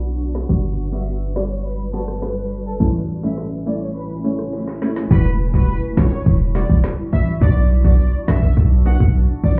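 Sultry and bouncy, this dancehall passage, cut from a longer piece, moves at 104 BPM in a straight 4/4, heard as if muffled through a wall into a club space. A hard-hitting 808-style bass sits up front with a punchy, heavy sine tone and a noise layer, while an electronic afro-pop kit brings a deep kick, woody snare, metallic hats and rim clicks. A hollow, detuned square-wave pluck with chorus adds bright accompaniment, and underneath a cloudy, granular pad holds mellow sustained chords, pumping with the sidechain and blurred by its own reverb. Above it all, a lush, distant violin section carries the melody with expressive vibrato and tape echo. A filter sweep runs through the first half over Gmaj7 and A, and a drum fill at 4.5 seconds leads into the second half at 5.1 seconds, where Emadd9 gives way to Bm. Tight, high-tuned bongos join in the background from 5.3 seconds.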